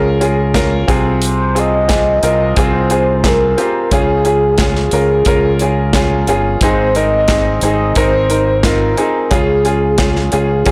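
A blown-out, overdriven recording with light reverb and small room ambience frames this short cut from a longer piece of piano-driven pop, moving at 89 BPM in a straight 4/4 with a hopeful mood. A bright upright piano sits up front, its woody, brilliant tone and short sustain carrying the accompaniment across the whole passage. Over it, a mellow horn-like synth lead sings the melody between Ab4 and Eb5, its round sawtooth voice shaped by a soft attack, sustained notes, vibrato, a filter sweep, and chorus and phaser effects. A fingered electric bass adds a dark, round low end, direct and amped, while a modern acoustic studio kit enters at 0.2 seconds with hi-hat, a medium-tuned snare and a punchy kick placed up front. The harmony moves from Db to Fm/C, returns to Db, then shifts to Ab before settling back on Db.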